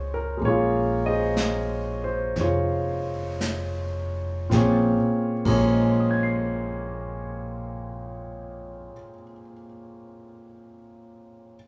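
Wet large-studio reverb and live-room ambience surround this wistful, intimate jazz ballad excerpt in Bb minor, which opens on a Bbm9 chord and slows over its first 4.5 seconds in a swung 4/4 at around 53-65 BPM, with an up-front grand piano whose action noise is audible carrying the accompaniment to 11.6 seconds, a woody, thumpy pizzicato upright bass holding the low end until 8.9 seconds, and a distant, roomy vintage drum kit played with brushes, with dark cymbals, sounding only from 0.4 to 5.7 seconds.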